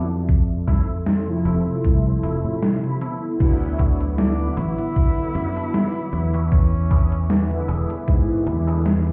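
A lightly swung 4/4 groove from a thumpy electronic kick and a gated 80s digital drum machine with snare, hi-hat, cabasa and crash cymbal starts at 0.3 seconds, with a growly, punchy fretless electric bass sitting up front beneath this dreamy, faded vaporwave excerpt. Dark, round synth brass with tape echo, a twangy clean electric guitar riff and a warbling, nostalgic pad hazily sustaining chords in the background fill out the harmony, and after a short break ending at 3.4 seconds a breathy tenor saxophone enters at 4.2 seconds with a jazz-style solo full of vibrato and scooped notes. The whole mix sounds muffled, as if heard through a wall in a club, with a cassette tape character.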